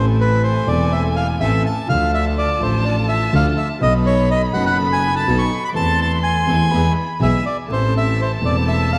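Vinyl crackle and a moderate stage reverb frame this melancholic, dramatic tango excerpt in rubato 4/4, where an up-front, reedy bandoneon with tape echo carries the melody over a biting, bowed double bass; a dark violin adds an expressive second line with vibrato and portamento, a mellow grand piano with audible action noise accompanies, and an earthy chamber string section places stabs in the background as the harmony moves from Am through Dm and B7 to E and back to Am.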